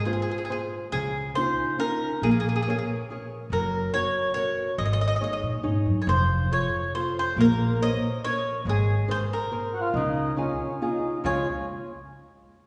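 A woody, double-strung mandolin carries the melody of this wistful, romantic Italian folk serenade from the start, over a small, fingerpicked nylon-string guitar and a pizzicato upright bass with a warm bottom, moving in a straight 3/4 at 140 BPM in Db major. The mandolin, guitar and accordion sit up front in a reverberant concert-hall space, with the harmony drifting from Ab6 and Dbadd9 through Bbm7, Gb and F before settling back on Db. At 9.7 seconds a reedy, close-miked accordion slips in with a rich, dry second line as this short fragment of a longer piece closes.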